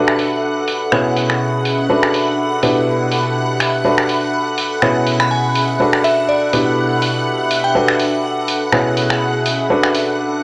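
A clear, worn grand piano riff with tape echo leads this energetic, bittersweet piano house excerpt over swung, punchy analog drum-machine snaps and overdriven hi-hats, a shimmering string-machine violin section, and a breathy, detuned pad, while a crystalline FM synth bell sings a brief melody from 5.2 to 7.8 seconds, all in a gritty, cassette-dusted recording with moderate plate reverb.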